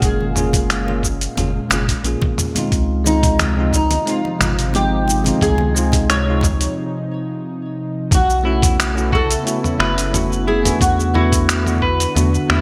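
A straight 4/4 groove at 89 BPM drives this sunny, blissful sunset chillout excerpt: an up-front, gritty sampler-style kit of finger snaps, hi-hat, shaker and toms with gated reverb sits over a thumpy electronic kick, with very quiet congas dropping out at 6.6 s and a round, deep analog bass underneath. A fingerpicked flamenco guitar with fresh strings carries the melody through chorus and delay, over a bell-like tine electric piano and a lush, detuned unison pad in the background, moving from Gbmaj9 and Dbmaj9 through a short break at 6.8 s into B9sus4 and E9sus4, where a clean, picked semi-hollow electric guitar adds arpeggios from 8.4 s. A moderate plate reverb and bright 1980s-style digital production give the mix its polished sheen.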